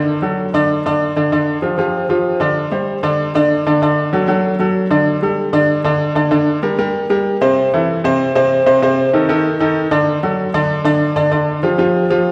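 A driving, straight 4/4 pulse at 192 BPM propels this fiery Latin excerpt in G minor, tuned slightly sharp to A4 = 445 Hz. A bright baby grand piano plays solo for the full 12.3 seconds, ranging from C3 to D5, with a brilliant, worn character, short sustain and audible action noise that keeps it intimate and up front. The passage states a phrase twice, the second statement arriving at 6.3 seconds, moving through chords such as D, G5, Csus2 and Gsus2 before darkening into Gm, Am and Adim and returning to D and G5. The piano sits in a church or concert hall with a wet reverb that lingers for about 2.1 seconds, wrapping the close, present instrument in a generous tail. It is cut from a longer piece.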